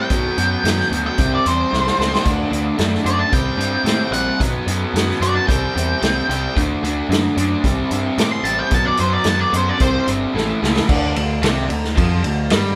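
An up-front, dark octave-fuzz lead guitar carries the melody over a double-tracked, overdriven garage guitar riff, a bright, punchy fuzz bass and a vintage drum kit with dark cymbals and fills at 1.7 and 10.3 seconds, in a swaggering, gritty blues rock and southern rock power-trio groove at 111 BPM in D mixolydian, cut from a longer piece and played live in one room with moderate reverb, the lead dropping out at 10.1 seconds as the band moves through A to a closing D5.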